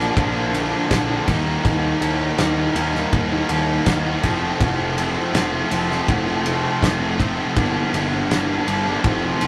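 A rough rehearsal-room recording with moderate small-room reverb carries this brooding, shadowy snippet of quiet-loud alternative rock in straight 4/4, where an up-front, loose indie drum kit with a punchy kick, medium-tuned snare and dark ride cymbal drives a crunchy overdriven guitar riff, backed in the background by a double-tracked distorted guitar and a high-gain distorted guitar, while a round, fuzz-laden picked electric bass holds the low end through a Bb, Eb, F, Gm progression.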